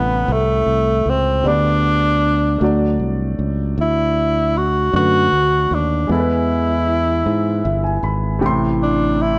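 Slow gospel in a straight 6/8, this short excerpt cut from a longer piece feels hopeful and jubilant. A clear, forceful tenor saxophone carries the melody up front in a pop solo style, punchy with a smooth top and a light vibrato. Beneath it, a concert grand piano accompanies with an intimate, natural tone, deep bass, long sustain and audible action noise, adding a fill between 7.3 and 8.4 seconds. A fingered electric bass sits prominently in the mix, bright, growly and direct. The harmony moves from A minor through G over D and D to E before settling back on A minor, all set in a moderate large-studio reverb with a soft top end.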